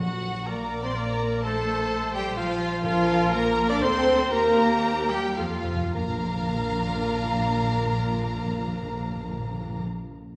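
Urgent and dramatic, this quick classical-period movement for symphony orchestra in 3/4 is cut from a longer piece. A rich, expressive first-violin section carries the melody with vibrato, while a distant, focused second-violin section, a mellow clarinet, a warm cor anglais and a very quiet, hollow silver flute fill in second lines behind it. A mellow French horn section holds sustained chords, and a lush cello section and a smooth-topped double bass section anchor the bass, with a smooth, even viola section joining the accompaniment at 0.5 seconds. Timpani with soft mallets and round calf heads enter at 2.8 seconds, and the music slows from 2.1 to 5.9 seconds, capped by a timpani fill just before the harmony settles back home at 5.9 seconds. The orchestra sits in a wet recital-hall reverb that gives the ensemble a spacious, resonant sound.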